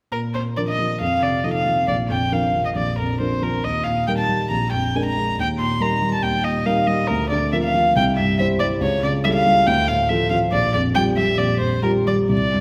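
Graceful and lively, this excerpt from a quick classical-period movement in Bb major moves at 138 BPM with a rubato feel, as a single up-front violin sings a pure, floating melody with soft-attacked sul tasto bowing over a warm grand piano's short-sustained accompaniment, both bathed in a wet recital-hall reverb as the harmony travels from Bb through Eb and C toward Dm and Gm7/Bb.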